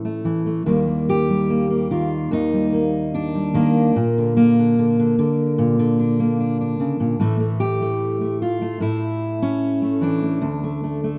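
A rough home-demo sound frames this short excerpt, with the top end dulled above 10.7 kHz and a lush hall reverb lingering for about 2.7 seconds behind the playing. It is an intimate, wistful folk piece for a single fingerpicked steel-string acoustic guitar, unhurried and straight in 4/4. The dreadnought guitar sits up front, full-bodied and warm, spanning from a deep D2 in the bass up to G4. The harmony drifts from A to an unexpected Eb, settles on Bb at 4.0 seconds, and returns to A before closing on a bare D5 shape at 10.4 seconds. The guitar plays alone throughout, and the passage is cut from a longer piece, ending at 11.2 seconds.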